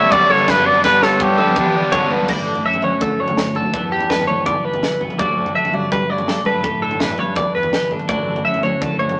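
Math rock and midwest emo in D major at 166 BPM, this bright, playful excerpt opens with a punchy, vintage trumpet melody with vibrato that ends at 1.9 seconds and an overdriven, double-tracked stack-guitar riff that stops at 2.3 seconds, while two clean, twangy twelve-string electric guitars play accompaniment and arpeggios (the arpeggios with a warbly pitch drift), a growling, overdriven fingered bass sits in the background, and a crisp fusion kit with a high-tuned snare and punchy kick plays a fill from 0.8 seconds, all in a rough rehearsal-room sound with stone-room reverb and a small-speaker character.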